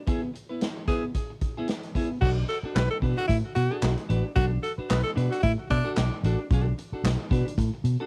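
A home cassette recording with light reverb captures this short, driving funk passage, swung on the sixteenths. A clean, picked electric guitar and a big-band drum kit with a punchy kick, medium-tuned snare, hi-hat, crash and handclaps play from the start, with the kit sounding natural in a big room and carrying a tape grit. A close-miked, breathy tenor saxophone plays a clear jazz line with scooped notes and tape echo from 0.9 to 5.9 seconds, while a dark, round, foam-muted fingered bass enters up front at 2.2 seconds as the harmony moves from E/B to Bm7.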